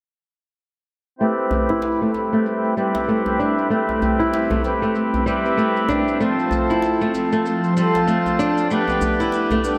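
Bathed in a lush hall reverb with a big arena sound, this hypnotic organic downtempo excerpt opens at 1.2 seconds with a reedy, nasal, breathing hand-pumped harmonium and a bright, fingerpicked flamenco guitar up front, both low-pass filtered and carried by delay, over a tape-warm cabasa set in the background. A deep, saturated, compressed djembe joins at 1.5 seconds, and from 2.5 seconds a dark, warbling, detuned pad with a nostalgic lo-fi tint holds sustained chords in the background through chorus and phaser. Filter sweeps run across the guitar, harmonium and pad as the swung groove moves from Am7 to F and then G.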